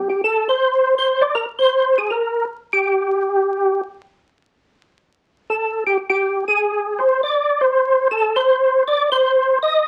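A lone percussive tonewheel organ opens this swinging, soulful jazz fragment at 160 BPM, its mellow, round tone, third harmonic percussion and chorus vibrato turning through a slow rotary speaker up front, playing between G4 and Eb5 in a small room, heard through the crackle of a very old 78 rpm record.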